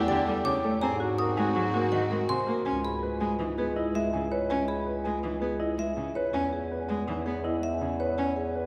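Hypnotic and meditative, this minimalist classical pattern music moves at 163 BPM in a straight 5/4 in C# minor, with a warm concert grand piano carrying the melody over a bowed, vibrato-rich cello, a distant, roomy bass clarinet up front on the bass, and arpeggios from a bright rosewood marimba and a dry, dark xylophone with wooden mallets. A solo clarinet and a lush, focused studio string section sit in the background and stop at 2.4 seconds, as the harmony shifts from A7sus4/E and G#7 into C#m7 and then E. The piano's audible action noise and vintage character stand out, and the whole ensemble is heard in a church or concert hall, bathed in wet cathedral reverb, in this short cut from a longer piece.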